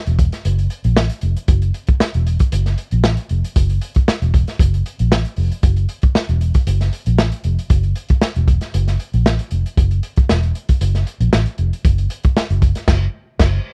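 A crunchy, gritty breakbeat drum kit with dark cymbals, a tight kick and a medium-tuned snare sits up front beside a round, foam-muted vintage fingered electric bass in this playful, energetic funk excerpt in F# mixolydian at 116 BPM, captured dry and close in a 1970s-style studio and closing on a band accent at 12.9 seconds.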